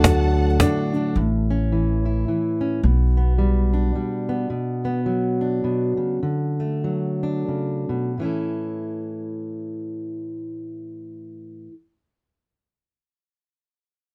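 A swung 3/4 lilt at 84-109 BPM drives this peaceful, pastoral acoustic folk excerpt in A mixolydian, where a snappy, close and dry cajon, an expressive bowed string section with vibrato and portamento, and a brilliant upright piano with audible action noise sound together only briefly at the start, a dark, growly pizzicato upright bass holds on until 3.9 s, and an up-front, full-bodied fingerpicked jumbo steel-string guitar carries on alone through a slowing passage from 4.5 to 8.2 s over chords moving from D through A, G/B and Bm back to D and A.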